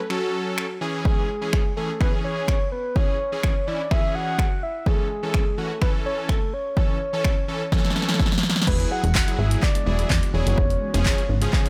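Dance-pop at 126 BPM in a straight 4/4, energetic and driving, cut from a longer piece. A punchy analog drum machine sits up front with kick, snare, handclaps, finger snaps, hi-hat and crash, beneath a big, bright, detuned polysynth with sidechain pumping and a full, round octave-layered synth lead that carries the melody with chorus, vibrato and dub echo over F#m, C#m and A. After a drum fill at 7.7 s, a new section opens at 8.7 s on Eadd9: a funky, wave-folded analog bass enters up front with its own pumping, a very quiet, mellow pluck adds arpeggios, and at 9.5 s an ethereal, airy pad brings slow-attack sustained chords, all within a digital ambience.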